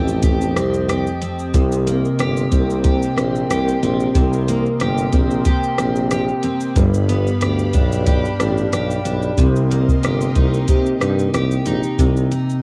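A soft vintage rhythm box keeps a lightly swung 92 BPM pulse in 4/4, its deep kick, metallic hats, rim click and shaker sitting up front in this lonely, mellow bedroom-pop fragment in C dorian. A picked, full-bodied jumbo steel-string acoustic guitar, with audible finger squeak, analog chorus, vibrato and cassette grain, carries the accompaniment over F9, Cm7 and G7 changes, while a punchy tuba with vibrato and tube saturation plays a warm pop-style bass line close in the mix. Behind them, a swirling, detuned sawtooth pad with phaser and chorus holds soft-attack chords with a long release, and the home cassette recording stays dry and intimate.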